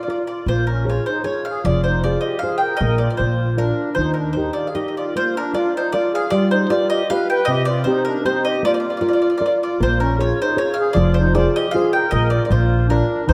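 A wet concert hall reverb, with a decay of about 1.9 seconds, surrounds this short, lively Italian folk serenade in a romantic 3/4 at 154 BPM. Up front, a bowl-back mandolin carries the melody with picked, double-string tone, while an accordion plays a sweet, airy, reedy second line with light tremolo tuning. A classical nylon-string guitar supplies thumb-plucked accompaniment from 0.1 seconds, and a woody, thumpy pizzicato upright bass with steel strings sits prominently, playing from 0.5 to 4.5 seconds and returning at 9.8 seconds. The harmony moves through Bbm7, Fm, Bbsus4 and Bb, with Eb, G7 and Cm colouring the middle, as the same section is stated twice, the second time beginning at 5.2 seconds. The passage is cut from a longer piece.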